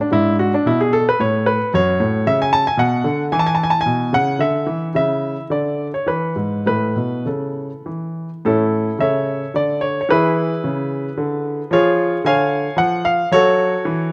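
A warm, intimate baby grand piano carries this radiant, flowing excerpt alone, a baroque-style suite movement in A major and 3/4 at 111 BPM, played with rubato and tuned slightly low to A4 = 439 Hz. Sitting up front with short sustain and audible action noise, the piano ranges from F#2 to A5, moving through a first section before a second begins at 8.4 seconds, where harmonies pass from E7 to C# and settle on F# minor near 13.3 seconds. Close, detailed miking and light reverb give the natural tone a near, unadorned presence.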